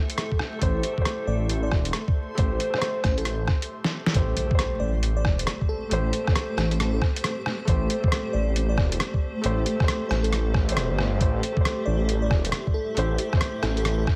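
Rainy and wistful, this future garage excerpt in A minor moves at 136 BPM with a swung 4/4 feel, where a felt-muted upright piano and a blurred granular cloud pad, both roughened by 12-bit sampler grit and sidechain pumping, sit over an up-front muffled, pitched-down sampler kit with thumpy kick and a menacing detuned saw bass, while a sparkling bell-like FM electric piano with chorus and delay glints in the background, a reversed swelling texture drifts through the opening 3.7 seconds, a drum fill leads to a very quiet electronic impact at 4.1 seconds, and vinyl crackle hangs over the whole.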